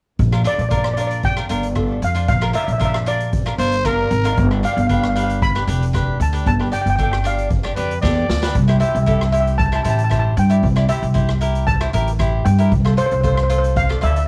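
Calypso in a festive, sunny mood, cut from a longer piece, with shimmering steel pan carrying the melody over crisp, picked cavaquinho, a woody, thumpy pizzicato upright bass up front, and a street-band drum kit of hi-hat, boomy kick, rim click and snare, while a raspy, growling trumpet steps in briefly at 3.6 and 7.8 seconds, the second time alongside a drum fill at 8.0 seconds, and the pan, cavaquinho, drums and trumpet carry a cassette-tape tint within a lightly reverberant home recording.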